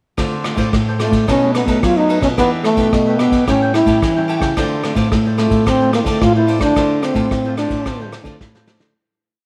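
A breathy, dark trombone with light vibrato, scooped notes and tape echo sits up front from 1.0 s, singing a yearning, motif-based jazz melody over a lively samba and choro groove of crisp, bright cavaquinho strumming in sixteenths, a very quiet fingerpicked nylon-string guitar with thumb bass and syncopated plucked chords, a warm thumb-plucked nylon-string bass figure with finger squeak, and a vintage brush kit with punchy kick and dark cymbals, all in a light small-room reverb, before a fade-out from 6.8 s closes on a drum fill at 8.4 s.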